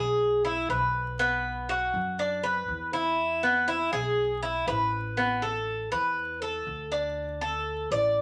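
A bright, metallic Cuban tres leads this short, danceable slice of Cuban son and guajira, picking arpeggios on its double strings, some of them octave-doubled, and it sits up front in the mix. Beneath it from the first moment, a woody upright bass with gut strings plays pizzicato, its dark, thumpy tone kept well below the tres. The groove moves at 121 BPM in a straight 4/4, carrying a nostalgic air that the vinyl crackle underlines. The harmony starts on E, moves through Bm and back to E, then shifts at 5.2 seconds to a second passage built on Asus2 and D5. A wet studio reverb lends the acoustic pair a modest sense of space, and both play together to the end of the cut at 8.2 seconds.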